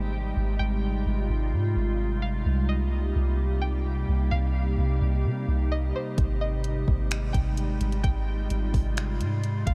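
A hazy, lightly reverberant digital ambience frames this melancholic cloud-rap excerpt at 129 BPM in a half-time feel, where a glassy, ethereal FM pad with ensemble chorus and sidechain pumping holds sustained chords over Abmaj7 and Cm7, a deep, round 808-style bass sits up front, a faint, twangy string-like resonator pluck carries the melody through chorus, phaser, low-pass filter and diffuse ambient delay, and a smooth R&B drum kit of finger snaps, tape-warm hi-hat and soft kick enters at 6.2 seconds.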